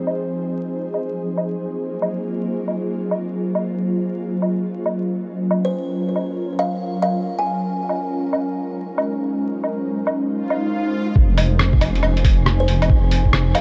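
An ethereal, chorused pad with 12-bit grit and sidechain pumping opens this ghostly, melancholic future garage excerpt in a swung feel, soon joined by a muffled, pitched-down lo-fi drum kit of hi-hat, rim click and woodblock under vinyl crackle and a vast dreamy reverb, while a woody, hollow kalimba with delay drifts in at 5.6 seconds, and after a brief electronic swell a thumpy kick and a deep, rumbling detuned saw bass with tube saturation arrive at 11.2 seconds, followed by a faint, breathy wind-like noise texture.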